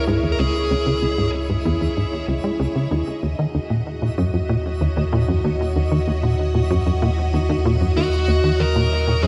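Hypnotic and expansive, this 95 BPM ambient space-music excerpt rides a tight, punchy sawtooth sequencer bass riff with ring modulation, analog chorus and delay over a round sine sub bass, while a lush vintage string machine holds chorused chords moving from C#m to D#m7, a twinkling granular texture fades in with octave-up shimmer in the background, and a dark, overdriven electric lead guitar with delay plays brief melody phrases at 0.0 and 8.0 seconds, all bathed in a heavy echo-chamber reverb.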